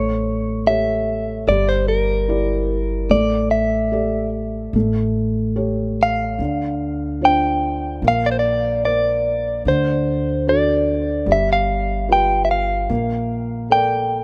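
A slow, straight 4/4 pulse at 74 BPM carries this intimate, melancholic acoustic folk-pop ballad in D minor, cut from a longer piece and lasting about 14.2 seconds. Up front, a direct-recorded clean electric guitar plays the melody between Bb4 and G5, its picked tone bright, compressed and scooped, with a harmonic tremolo coloring each note. Beside it, a felt-muted upright piano supplies soft, mellow accompaniment from D3 to D5, close enough that the audible action noise becomes part of its natural, intimate character. Beneath them, a pizzicato upright bass on gut strings sits lower in the mix, its woody, thumpy, dark notes moving between G1 and D2. The harmony wanders from A7 and Em7b5/G through Dm7 and Bbadd9 to a D major chord at 9.7 seconds, then G7, before settling on Bbmaj7. Light reverb and small room ambience give the rough home demo mix a close, unpolished feel.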